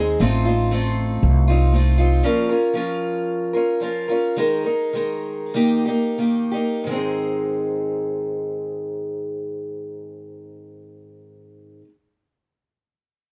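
A dark, warm production with light reverb frames this peaceful acoustic folk excerpt, where a bright, up-front archtop guitar picks its accompaniment through chords from F7/A and Bbm to Ebsus4, Eb and finally Ab. A woody, growly pizzicato upright bass with a thumpy tone sits up front only for the opening 2.2 seconds. The guitar then carries on alone, its finger squeaks audible, as the pace slows until 6.9 seconds, and it plays on until 11.9 seconds.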